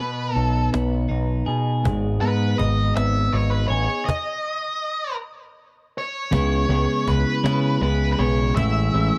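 A growling, overdriven picked bass sits up front in this bittersweet, moody indie rock excerpt in C# minor, moving slowly at 54 BPM in a straight 6/8, tuned to A4 = 437 Hz. Over it, a dark octave-fuzz lead guitar carries the melody, while a bright, twangy twelve-string electric guitar plays a clean, compressed riff bathed in spring reverb, and a woody, close cajon struck with hard hands keeps time. The band halts on a stop at 4.1 s before a new section opens at 6.3 s on C#m7, all inside a dark, digital ambience.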